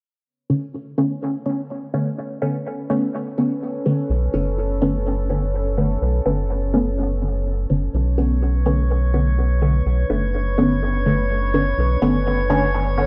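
Dry, gritty cassette-tape sound and light reverb frame this deep, nocturnal dub techno excerpt in B minor at 125 BPM with a swung 16th feel: a muted, detuned sawtooth chord stab on Bm9 opens at 0.5 seconds through phaser and dub echo before a filter sweep takes hold of it from 7.9 seconds, a moody sawtooth pad with chorus sustains beneath, a round analog bass sits up front, and a glassy texture of drifting overtones enters at 8.4 seconds.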